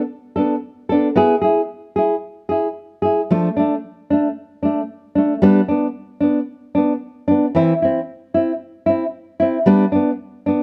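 Highlife with a bittersweet yet danceable mood, carried by a lone nylon-string guitar that plays throughout in a lightly swung 4/4 feel. The classical guitar sits up front with a dark, thumb-plucked tone, fresh strings and audible finger squeak, moving through chords such as Gadd9, E and D5 before a second phrase from 5.4 seconds settles on G, C/E and back to G. Light reverb adds a touch of space to this fragment of a longer piece.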